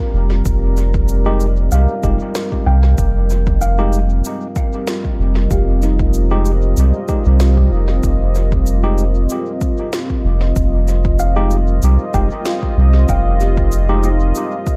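Hazy and meditative, this ambient dub passage, cut from a longer piece, moves at 95 BPM in 4/4 with a light swing on the sixteenths, resting on a single F7sus2 chord throughout. A deep, moody pad of detuned sawtooth unison and sine with a sub octave sustains chords from the start, its slow attack, long release, chorus and reverb giving it a mellow, evolving shimmer beneath a round, up-front sine sub bass. From 0.5 seconds an overdriven electronic kit enters, a deep kick paired with a quieter woody snare and shaker, both re-recorded in a large room, the snare and shaker trailing dub echo. From 1.3 seconds a worn, slightly out-of-tune tine electric piano adds clean stabs through a combo amp, also soaked in dub echo, while a soft, intimate felt-muted upright piano spins dark arpeggios in the background through tape echo from 1.7 seconds. The digital ambience keeps the whole mix echo-heavy and spacious, with the warm bass anchoring the drifting layers above.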